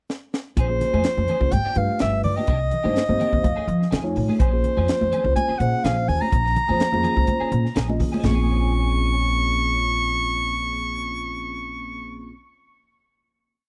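Nocturnal and funky, this short electric jazz fusion piece in Bb minor moves at 125 BPM in a straight 4/4, opening with a quick drum fill before the band settles into a groove over chords such as Bbm9, G7, Cm9 and F7alt. A tight funk drum kit sits up front with bright cymbals, a high-tuned snare and a tight kick, while high-tuned congas with a thin, damped, saturated skin play a loose pattern with hard hands in the background until about 8.5 seconds. The upright bass is woody and pizzicato, carrying a syncopated riff up front, and the tine electric piano adds mellow, rootless chord stabs through analog chorus, with fills at 3.0 and 7.5 seconds. A clean, compressed electric guitar strums upper chord shapes in the background, colored by ensemble chorus and tape echo. Over this, a breathy soprano saxophone plays a whispered, intimate, hook-based melody with light vibrato and scooped notes, and the piece closes on a sustained final chord from 8.2 seconds in a dry, close small-room sound with a 1970s studio character.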